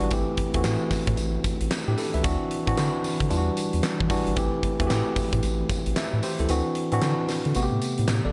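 Confident and slick, this short new jack swing excerpt in swung 4/4 sets a clean, up-front tine electric piano comping through Am7, D9 and Em9 against a round, deep analog bass and a huge arena drum kit with a fat snare, punchy kick, handclaps, hi-hat and tambourine, its kick dropping out from 6.5 seconds as studio reverb adds a polished sheen.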